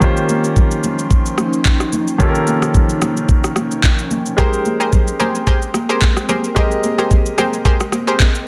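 Amapiano at 110 BPM in Ab major, this short excerpt has a relaxed, warm feel with a 16th-note swing. A clear, polished baby grand piano sits up front, playing accompaniment over an Eb13 chord that moves to Abmaj9 at 4.4 seconds. An afro-pop drum kit of knocking kick, handclaps, rim click and shaker carries a gritty vintage sampler texture, while bright, high-tuned congas with a thin-skinned, hard-handed sound play along in the background until 8.1 seconds. Behind them, an ethereal, airy pad holds sustained chords with a slow attack and long release, colored by ensemble chorus and reverb. At 4.4 seconds a round, warbling analog pluck enters up front with short stabs, colored by a filter sweep, chorus and tape echo. The mix has a dense, heavily limited modern finish set in a digital ambience.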